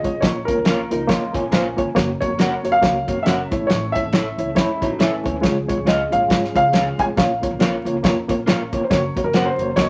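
Uptempo 1960s-style soul at 138 BPM with a joyful, uplifting swing, led by an intimate baby grand piano melody with audible action noise over a reedy, worn electric piano with overdrive and fast tremolo, a round tonewheel organ with key click and fast rotary speaker sitting very quiet beneath, a woody, growly pizzicato upright bass, and a cloth-damped, thuddy drum kit with a fat snare up front, while a slightly broken-up guitar adds picked stabs with warbly pitch drift from 0.7 s and a lo-fi guitar riff appears at 0.9 s and 4.6 s, all under moderate studio reverb and vinyl crackle in this cut from a longer piece.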